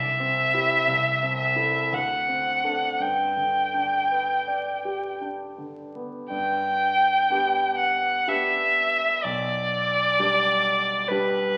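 A solo violin sings a tender, serene melody up front with vibrato and portamento over a grand piano's deep-bassed, natural accompaniment in an unhurried, rubato triple metre, this brief fragment of a romantic classical duo heard through a recital hall's lingering reverb and the crackle of a very old 78 rpm record.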